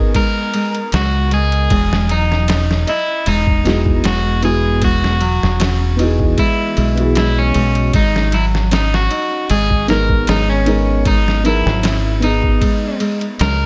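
Trip hop with a smoky, cinematic mood, this short cut from a longer piece moves at an unhurried pace with a light swing on the sixteenths. A slightly broken-up, twangy electric guitar carries the melody through a dub echo, while a felt-muted upright piano adds soft, intimate accompaniment with audible action noise, shimmering through harmonic tremolo and tape echo. A fingerpicked nylon-string guitar weaves classical-toned arpeggios, also treated with tape echo, and a deep dub bass sits round and up front at the bottom. The sampler-style boom bap kit sounds compressed, pitched down and gritty, with a thumpy kick, a medium-tuned snare and ride cymbal, as if re-recorded in a small room. The harmony moves from G#madd9 to Eadd9 at 1.7 seconds and back at 7.9 seconds, and the dry mix keeps the whole ensemble close and present.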